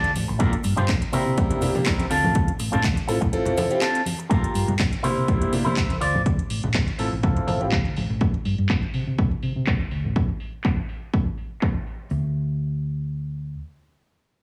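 Filtered disco house at 123 BPM in D minor, this nostalgic, sensual excerpt opens with a bright, twangy envelope-filtered guitar riff up front over a round, hollow-body fingered bass, with both parts pumping under sidechain and low-pass filtering, while a punchy, overdriven electronic kick and a house kit of handclaps and metallic hats drive a swung groove. A clear, intimate grand piano with audible action noise and a phaser comps on Gm7, C7 and Dm7, and soft-handed tube shaker and congas sit in the background. From 4.3 seconds a filter sweep runs across the mix and the drums, the guitar drops out at 6.2 seconds, and the bass carries on after the drums stop at 12 seconds, running to the end at 13.5 seconds, all within a heavily compressed radio sound.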